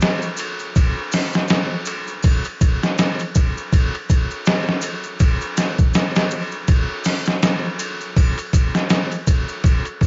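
A dull, cassette-bound home recording with its top end shaved off and a digital ambience around it opens this brooding, hypnotic trip hop fragment, which moves on a swung sixteenth-note feel. Up front throughout, a pitched-down, sampler-style kit of hi-hat, ride cymbal, a thumpy kick and a medium-tuned snare sounds compressed, muffled and overdriven, as though re-recorded in a small room. In the background, acoustic maracas, triangle and a group handclap sound in a live room.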